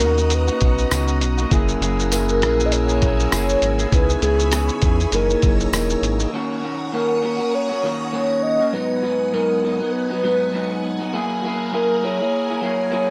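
A lightly swung 100 BPM groove in 4/4 comes from a muffled, pitched-down sampler-style drum kit with a thumpy kick, hi-hat, rim click and shaker, joined by a deep, round analog bass and, from 0.9 s, a jingly tambourine in this laid-back, sunny indie and bedroom pop excerpt. A detuned, warbling lead carries the nostalgic melody over a slightly broken-up electric guitar with wobbly pitch drift, a soft, flute-like tonewheel organ turning through a slow rotary speaker, and a swirling, bright string machine washed in phaser and plate reverb. Drums, bass and organ drop out at 6.3 s, leaving lead, guitar and strings to drift over chords moving from D#m7 through G#m7 to F#9.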